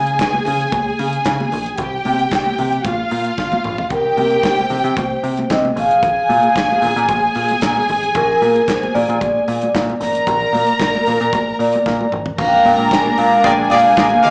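Heard as a live gig through a venue's PA, with club reverb and a small-speaker sound, this joyful, celebratory disco passage opens with a dark, woody violin section playing a second line with slapback echo. Beneath it sit a round, picked dub bass, a smooth, dry soul drum kit with kick, snare, hi-hat, handclaps, toms and crash, and high-tuned congas in the background. At 3.9 seconds, after a drum fill, a mellow vibraphone with soft mallets and slow motor vibrato takes the melody; a distant, reedy string section adds sustained chords from 12.4 seconds, and a clear horn section enters with stabs carrying slapback echo at 13.4 seconds.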